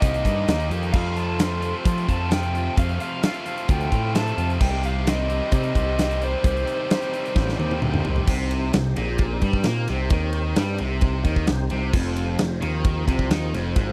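A dry, close 1970s-style studio sound frames this swaggering, gritty classic rock passage at 131 BPM in straight 4/4, cut from a longer piece and moving from C dorian into C minor at 8.3 s. An up-front drum kit with a punchy kick, medium-tuned snare and bright stone-room ambience drives beneath a growling, overdriven picked bass, a double-tracked distorted guitar riff and a very quiet tonewheel organ holding sustained chords with key click and a slow rotary speaker. An overdriven slide guitar carries the melody until 7.8 s, as a drum fill at 7.4 s leads into the second half.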